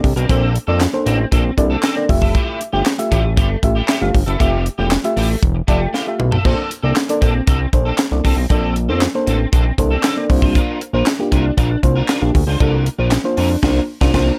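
Early-eighties boogie funk at 117 BPM in F major, this smooth, danceable excerpt moves over Bbmaj9, Fmaj9 and C9sus4 chords, carried by a dry, tight funk kit with bright cymbals, handclaps and a high-tuned snare, alongside a fat, detuned sawtooth analog bass sitting up front. A mellow FM electric piano with a soft, round, dark tone and chorus supplies the accompaniment, while a slightly broken-up, scooped electric guitar picks out a riff through an ensemble chorus. The piano and drums add fills around 6 seconds, and the band hits an accent at the close, all in a close, nearly reverb-free sound.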